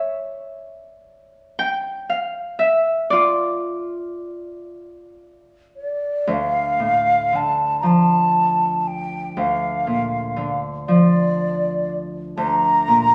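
In a slow, rubato 6/8 at 39 dotted-quarter beats per minute, this longing, mournful Celtic folk fragment opens with a fingerpicked, ringing Celtic harp playing alone in D harmonic minor. At 5.8 seconds a breathy wooden flute enters with a tongued, unsteady melody that carries vibrato and a distant quality. From 6.3 seconds the music settles into D minor and moves through Dm, Bb/D and Gm/D, with both parts up front in a large studio reverb that gives the sense of a band playing live in one room.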